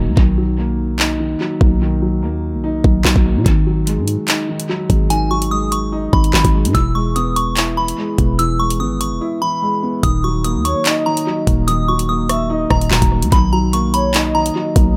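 A dark, boxy concert grand piano and a growling, buzzy 808-style bass open this cold, menacing drill excerpt, with the piano's mellow chords and deep bass sitting up front beside the bass's fast-attack, decaying sine notes in the low register. The electronic drill kit arrives almost at once at 146 BPM with a half-time feel in 4/4, its knocking kick, metallic hats, handclaps and rim clicks pushed forward and trailed by analog delay. From 5.1 seconds a delicate, tinkling FM tine bell carries the melody high above, its bright, quickly decaying notes coloured by chorus, phaser and delay. The harmony in Eb phrygian moves through Bmaj7, Ab7(no3) and E to Ebm before returning to Bmaj7, and the drums briefly drop out just before the change to Ebm. At 10.7 seconds a smooth, gliding portamento lead adds a soft, sustained second line of detuned sawtooth and sine tone with vibrato, chorus and delay. 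The mix is dry in room sound but heavy with echo, and the piece is cut from a longer track.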